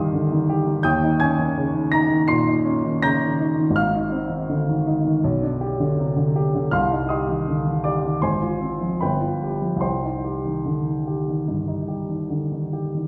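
A warm, natural-sounding baby grand piano plays alone throughout this passionate, bittersweet romantic character piece, sitting up front and ranging from G1 to C7 with a freely breathing rubato feel in 4/4. A wet recital hall reverb surrounds it, as if heard from further back in the room, while the harmony moves from Cm through Eb7, Ab and G/B before returning home via Fm/Ab and G7 to Cm at 9.8 seconds. The passage is cut from a longer piece.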